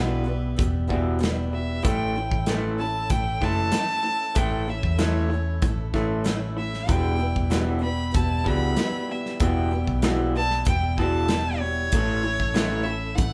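A band playing live together in one room fills a large studio with moderate reverb, giving this dusty, wistful folk rock and heartland rock excerpt a roomy, natural sound. A rich, smooth fiddle carries the melody with light vibrato, while a picked old ladder-braced acoustic guitar with worn strings supplies woody, boxy accompaniment. Underneath, an electric guitar through a small old amp plays a twangy, slightly broken-up, lo-fi riff, and a hollow-body short-scale electric bass adds a dark, round, punchy low end. A tonewheel organ holds clean sustained chords in the background, its key click audible through chorus vibrato and a slow rotary speaker. A natural country drum kit with a punchy kick and medium-tuned snare joins at 0.6 seconds, and the band moves steadily between E minor and A in a straight four-four feel.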